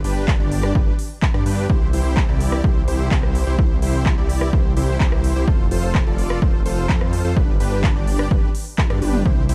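Triumphant and euphoric, this festival progressive house passage in C major drives along at 127 BPM in a straight 4/4, cut from a longer piece. A huge, dense supersaw riff, thick with detuned unison saws over a sub octave and shaded with vibrato, carries the hook between D4 and D5, pumping against the sidechain and trailed by tape echo. Beneath it a menacing detuned saw bass, saturated and beating, runs from F1 to G2 with the same sidechain pumping. A big-room kit of crisp hats, handclaps, ride cymbal, rim click and toms plays throughout, and a punchy, overdriven electronic kick sits up front from 0.3 to 9.3 seconds, with a drum fill running from 8.8 to 9.3 seconds. The chords move from G to C, then F and back to G, all wrapped in a digital ambience within a dark, warm production.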